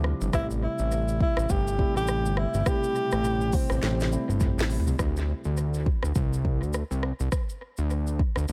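A breathy, whispered tenor saxophone leads this sultry, mellow afrobeats piece from 0.3 to 4.4 seconds, playing a jazz-style solo with vibrato, soft attacks and scooped notes, sitting up front with tape echo over an Am7 chord. Beneath it, a fat, detuned sawtooth bass with a saturated filter pluck and an electronic drum kit with a deep kick, sharp snare, smooth hats, shaker, rim clicks and toms drive a swung groove, with the drums adding a fill before the move to D7(no3). A clean tine electric piano with tape echo plays in the background until 5.0 seconds, all set in an echo-heavy digital ambience, as part of a longer piece.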